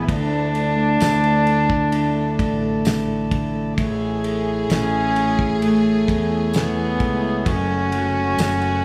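A slow, straight 4/4 pulse comes from a dry, damped 70s drum kit, with a fat snare, a tight kick and ride cymbal, while a jingly tambourine sits quietly in the background from 1.0 seconds. This tender, heartfelt pop ballad excerpt is carried by a solo bowed cello up front, its nasal, reedy gut-string tone in a period style sounding somewhat distant as it sings the melody in a middle register. Beneath it, a bright, bell-like tine electric piano plays accompaniment in the background, a clean tonewheel organ holds sustained chords through a stopped rotary speaker, and a fretless electric bass anchors the low end with a warm, direct and amped tone. At 3.8 seconds a studio violin section enters with a soft-attack, sul tasto second line, intimate and close with light vibrato. The harmony moves from Dsus2 to A and then F#madd9 at 7.5 seconds, all within a small room ambience.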